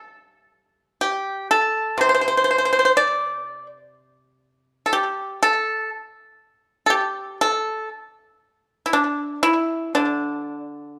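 Free, rubato timing floats over a nominal 60 BPM in 4/4 as a solo pipa plays this short pastoral, elegant cut of Chinese traditional music in the D shang mode, tuned to A4 = 438 Hz. The fingerpicked pipa sits up front, bright, dry and percussive, ranging from C3 to D5 with a slapback echo. Close, detailed microphones and light reverb frame the 11 seconds.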